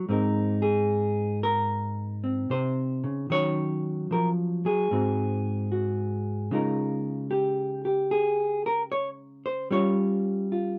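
Relaxed and sophisticated, this short solo jazz excerpt features a clean, fingered hollow-body electric guitar played up front with a dark tone, swinging gently in 4/4 through chords from Abadd9 to Ebm7 and Ab7 before settling on Db69 at 6.5 seconds, all within a small room's modest ambience and a warm production.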